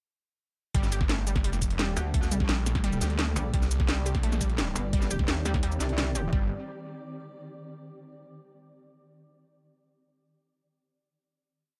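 At 0.7 s this short, dark and tense technical drum and bass piece drops straight in: an overdriven electronic kick knocks out a broken-beat pattern beneath tight, layered drums with a cracking snare, metallic closed hats and cabasa, given a small-room feel. A snarling, detuned sawtooth bass growls up front in chopped phrases, distorted and compressed, with a moving notch shaping its resonance. Over it, a bright unison pluck repeats a six-step arpeggio loop that drifts against the bar, its wave-folded, ring-modulated tone trailed by dub echo. From 2.0 s a metallic FM wobble bass joins, saturated and chorused, its modulated phrases changing wobble speed, while a swarming, granular drone swells in slowly in the background with sustained chords and its own reverb. The pluck, drone and growling bass all pump against the kick, and the drop gives way at 6.3 s to a final chord, with the mix overall kept dry and close.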